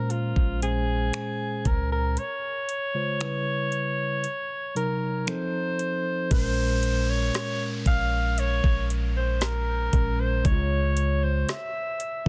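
A breathy alto saxophone carries the melody in a jazz-style solo, its subtone and scooped notes given a vintage, up-front presence and a touch of tape echo. This is a moody, longing slice of contemporary R&B in Bb minor at a slow 58 BPM in straight 4/4, cut from a longer piece. A mellow tine electric piano supplies clean, direct chords beneath it, moving from Bbm9 through Dbmaj7 and a chain of half-diminished chords to F7. A soft 808-style bass adds a deep, round, sine-like low end with fast-attack, decaying notes, while a produced electronic drum kit of finger snaps, metallic hats, a knocking kick and a woody snare with soft clipping enters at 0.1 seconds. A break runs from 2.2 to 6.3 seconds, after which an electronic downlifter joins as the harmony settles on Bbm7 and Db before the chords drop away. The mix is dry and up close, with a dense, heavily limited modern master.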